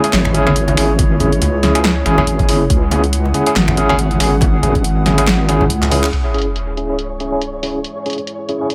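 Dark and cavernous, this short cut from a longer deep dubstep piece moves at 140 BPM in a half-time feel with a swung sixteenth-note lilt, sitting on a C# minor chord. A deep, softly wobbling bass sits up front with chorus, joined by an overdriven electronic kick from 1.0 to 4.8 seconds, while a deep house drum kit of finger snaps, handclaps, hi-hat and a punchy snare runs through the whole passage with overdrive and filtered hats. A barky, gritty tine electric piano cuts through with tremolo and dub echo on its stabs, and a moody analog pad holds sustained chords beneath it with chorus. Ringing hand-played congas with dub echo stay in the background. The kick drops out and a drum fill and band accent lead to a sub drop impact at 6.1 seconds, after which a flickering, grainy texture with its own reverb drifts in behind, all set in a light reverb.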